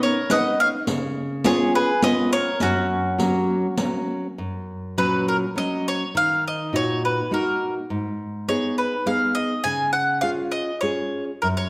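A resonant recital-hall sheen surrounds this sunny, romantic Italian folk serenade in 3/4 at 103 BPM, played rubato in F# major and cut from a longer piece, where a bright, up-front bowl-back mandolin carries the melody over a classical nylon-string guitar fingerpicked with audible finger squeak, while a round second mandolin and a riq with dark jingles and hard hands drop away by about 4.1 seconds, leaving the melody mandolin and the guitar to sing through the repeated section that begins at 4.4 seconds.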